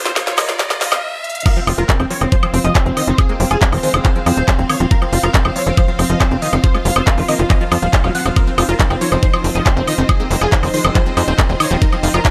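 Alien and hypnotic, this psychedelic trance excerpt at 139 BPM in F minor opens with a background riser, a very quiet grainy tube shaker, a drum fill, a clear bowed string section and a huge, detuned supersaw melody with phaser, tape colour and delay, then drops at 1.5 seconds. Beneath the melody sit a tight, nasal sequencer bass, a squelchy resonant acid bass riff, a faint metallic wobble bass and a dark, pulsing gated pad of sustained chords, with the pad, strings, acid bass and supersaw pumping against a knocking kick, cracking snare, crisp hats, handclaps, woodblock and crash in a dry, up-front mix.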